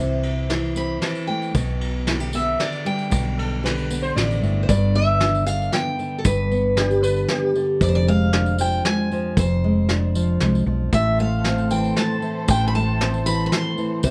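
A fingerpicked nylon-string guitar with a classical touch and audible finger squeak opens this nostalgic acoustic folk waltz together with a round, dark hollow-body electric bass sitting up front. A soft brush kit with a fat snare, tight kick and dark cymbals settles in almost immediately, and a close, dry, jingly tambourine joins just as a picked steel-string acoustic guitar takes the melody, its high line carrying an auditorium-like plate reverb. From 3.4 to 7.6 seconds a plectrum-plucked sitar adds a buzzing, shimmering second line over its sympathetic strings. At 10.9 seconds a dark chamber string section enters with smooth, bowed sustained chords rich in vibrato, deepening the gentle, warm glow as the harmony moves from G through Fm6 to Am. The whole small band sits in a moderate studio room, and this passage is cut from a longer piece.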